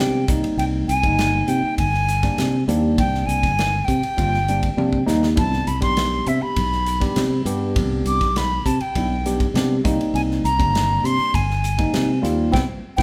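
Soaring and slick, this electric jazz fusion cut features a breathy, up-front silver concert flute carrying the melody over clean tine electric piano chords through a combo amp, a bright, growly fingered electric bass, and an airy studio drum kit with punchy kick and bright cymbals that enters at 0.3 seconds, fills at 4.8 seconds and joins the band accent at 12.5 seconds, as the harmony moves from Abmaj9 to Cmaj7sus2 and back in a live room bathed in large studio reverb.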